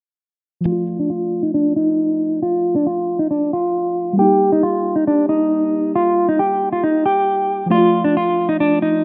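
A rough home-demo mix with light reverb and digital ambience opens this dark, eerie half-time hip hop fragment at 136 BPM in D phrygian, where muted, felt-like synth keys, soft and full-bodied with chorus, enter at 0.6 s beneath an up-front, fingered clean electric guitar melody colored by harmonic tremolo from 0.7 s, as a filter sweep runs throughout over chords moving from Dm to Eb and back to Dm.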